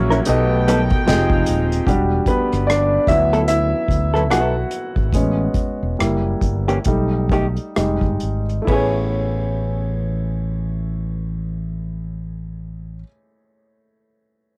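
A warm baby grand piano, fretless electric bass and soft-attack bowed strings open this soulful R&B and neo-soul excerpt in A major at a slow, swung 64-75 BPM. The distant string section stops at 1.9 s, while the dark, round bass, tinged by tube saturation, sits up front. A clean, compressed hollow-body jazz guitar carries a second line, and an unplugged kit of punchy kick, medium-tuned snare, rim click, hi-hat and ride, played with bundle sticks, keeps time until 8.9 s, as the piano takes a solo and the tempo slows through chords such as Em9, D69 and F#7b9, all heard in a small room with a homespun cassette character.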